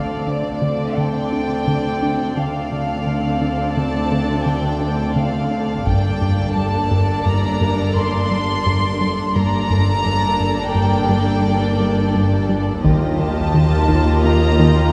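Cinematic suspense film score in 5/4 at 86 BPM, tense and eerie, with bowed strings played sul tasto: a soft, floating violin section carries the melody over a second violin line, while a dark, woody viola section, a clear double bass section and a cello section sitting in the background hold the low accompaniment through Dm7, Gmadd9 and Ebadd9. A punchy, plucky analog bass riff with a fast, decaying attack drives underneath, and very quiet taiko drums struck with heavy sticks surface only at 5.9 and 12.9 seconds. The whole cut from a longer piece sits in a wet cathedral reverb with a long 4.8-second tail, as if recorded in a church or concert hall.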